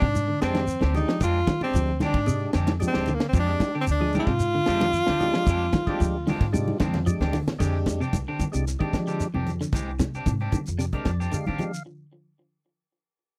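Afrobeat at 113 BPM in a straight 4/4, this brief excerpt from a longer piece sits in F dorian over an Fm69 chord and feels defiant and driving. A breathy tenor saxophone with light vibrato carries the melody up front until 7.1 seconds, while a tight funk drum kit with a high-tuned snare and tight kick works through hi-hat, ride, crash, snare and kick, capped by a drum fill from 6.5 to 7.6 seconds. Underneath, a woody, dark upright bass is plucked on steel strings, and bright, damped congas with hard hands sit in the background beside a grainy, mellow shekere. A clean, twangy electric guitar picks low arpeggios through tremolo and tape echo, and a second guitar at the edge of break-up adds slightly broken-up stabs. A fat, lightly overdriven tonewheel organ with third-harmonic percussion turns through a slow rotary speaker and takes a fill from 10.8 to 11.9 seconds. The sound is dry and close, like a small 1970s studio room with little reverb.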